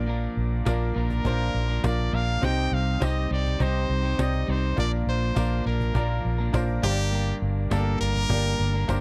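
This uplifting piano-driven pop excerpt opens with a bright upright piano whose woody tone and audible action noise feel intimate. Beside it sit a slightly broken-up, picked electric guitar riff, compressed and set in the background, and a dark, round, foam-muted vintage electric bass, amped and up front. A woody cajon with faint snares joins at 0.1 seconds, and a jingly tambourine follows at 0.7 seconds, both close and dry behind the band. At 1.0 seconds a brilliant, punchy trumpet takes the solo melody in a present pop style with light vibrato. At a straight 102 BPM in 4/4 and Bb major, the harmony moves through Bb, Cm, Bb and Gm, and the dry, close 1970s-style studio sound gives the whole a warm glow.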